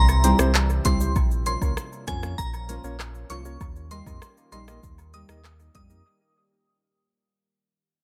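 An echo-heavy mix with light reverb and a digital ambience frames this short dancehall cut, which fades out across its full 6.1 seconds. The mood is tough and sultry, with a straight groove carried by an up-front, electronic afro-pop kit of deep kick, crisp hi-hat, handclaps, rim click and shaker, its tape-tinged sound re-recorded in a small room and sent through analog delay. A full, sine-and-triangle sub bass with an octave sits just as far forward, while woodblock and cabasa, with maracas and a group handclap, tick along in the background from 0.1 seconds. A glassy, crystalline FM bell carries the melody with chorus and analog delay, over a hollow, organ-like stab with a noise layer and a thumb-plucked nylon-string guitar playing arpeggios on fresh strings, both entering at 0.2 seconds. Beneath them a moody, detuned sawtooth pad holds sustained chords in the background, its chorus and reverb breathing with sidechain pumping as the harmony moves from C through Bbm to Eb.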